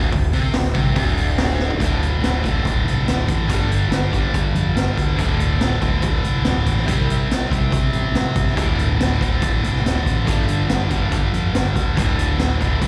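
Two bright, picked electric guitars, a cranked overdriven stack guitar sitting in the background and a tight distorted one up front, both carrying slapback echo, open this brooding, swaggering classic rock excerpt at 142 BPM alongside a growly, fuzz-driven fingered bass, while a gritty, punchy garage drum kit with a high-tuned snare enters at 0.1 s and plays a fill at 1.6 s before the riff settles into chords moving among D5, G5 and C5, captured as a live gig through a venue PA with recital-hall reverb.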